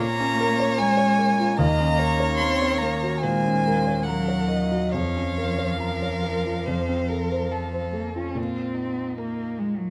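Classical slow romantic movement for piano quartet in Bb minor, a melancholic, yearning excerpt at 67-78 BPM with rubato, where a woody, up-front violin sings the melody with vibrato over a second violin's close, expressive portamento and a smooth, even cello line, resting on a mellow concert grand with deep bass in a moderate stone room, before a new section arrives at 8.4 s.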